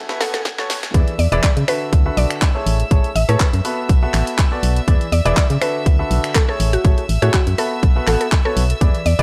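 A lightly swung groove drives this bittersweet, soulful piano house passage, cut from a longer piece. It opens on a short drum fill, with the punchy, tape-warm electronic kick arriving at 0.5 seconds. The drop lands at 0.9 seconds, where the hollow, organ-like FM bass enters dark and up front. A house kit of finger snaps, handclaps, hi-hat and a cracking snare sits around the kick, re-recorded in a large room. A clear, woody upright piano plays the riff with tape echo, while a round, mallet-like synth pluck carries the melody through chorus and echo. Over this, a floating, soft-attack violin section holds pure sustained chords. The piano, violins and bass all pump against the kick, and the whole mix has a gritty hardware character and digital ambience as the chords cycle through E7, D6, Amaj7 and Bm7.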